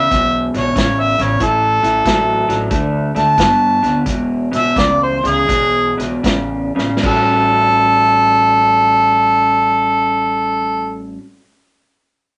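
Electric blues shuffle excerpt in A mixolydian, rollicking and gritty, swinging in 4/4 at 74-93 BPM and slowing from 1.4 to 7.0 seconds, where a drum fill leads into a new section, with a mellow, overdriven harmonica out front carrying the melody in scooped notes, a slightly broken-up, lo-fi electric guitar riff with spring reverb, a woody, thumpy pizzicato upright bass on gut strings, and a vintage drum kit of crash, hi-hat, punchy kick and snare that drops out at 7.3 seconds, all set in a wet small room.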